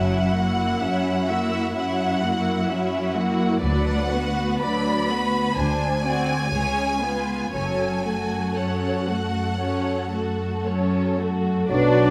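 In a rubato 4/4 at roughly 56-65 BPM, this melancholic, yearning slow romantic movement in F# minor, cut from a longer piece, sets a lush bowed string orchestra against a moderate scoring-stage reverb, with the close violin section carrying the melody in expressive vibrato and portamento over a second violin line, dark violas, a smooth cello section up front and woody double basses. The harmony leans from F#7 through Bm/D, D7 and C#7 back to F#m, and the strings play throughout. At 11.7 s the winds and brass arrive together: a bright, present solo clarinet and a pure, hollow flute section on second lines, a mellow bassoon and tuba in the background, and a distant, very quiet French horn section holding sustained chords.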